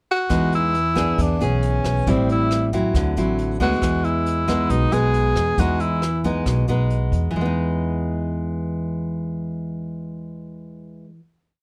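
Bossa nova in E major at 137 BPM, sunny and sophisticated, opens with a breathy tenor saxophone carrying a motif-based melody of song-like phrases, played up front with light vibrato and scooped notes until 6.2 seconds. Beneath it, a bright, full-bodied nylon-string guitar is fingerpicked with thumb bass and syncopated plucked chords, finger squeak audible, moving from Emaj7 through E7, Am7 and D9. A woody pizzicato upright bass plays a dotted root-and-fifth line, and a jazz brush kit keeps a soft groove of hi-hat, rim click and boomy kick until 7.2 seconds, all in a close, detailed recording with light reverb before the guitar and bass hold a final chord from 7.3 seconds.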